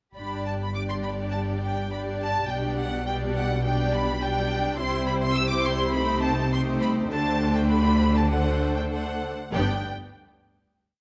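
In a straight 4/4 pulse, this short, lively and graceful classical-period movement for string orchestra places an up-front violin section on the melody, singing with expressive vibrato and a soft attack. Beneath it, a distant second violin section and close, lush violas play chords in the rhythm of the tune and hold sustained chords, while cellos give a smooth, sustained bass that a focused double bass section doubles. The bowed ensemble sits in a moderate recital-hall reverb and settles onto a final chord at 9.5 s.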